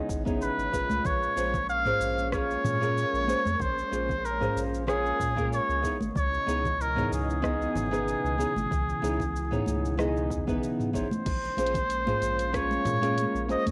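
A hazy home recording on cassette, softened by a moderate spring reverb, opens this wistful sunset chillout excerpt in an unhurried 4/4 with a light swing on the sixteenths. Up front, a trumpet with a cup mute carries the melody from 0.4 seconds, its veiled, punchy pop-style tone shaded with light vibrato and tape echo. Beneath it, a fingerpicked classical nylon-string guitar lays down the accompaniment, while a silky string machine holds dark, chorused chords in the background with a slow attack and long release. A round analog bass with tube saturation anchors the low end, joined by a deep, overdriven electronic kick and a smooth R&B kit of tape-softened hats, rim clicks, shaker, toms and crash. Bright, high-tuned congas enter at 0.9 seconds, close and dry in the background, as the harmony drifts between Dbm9 and Bbm9.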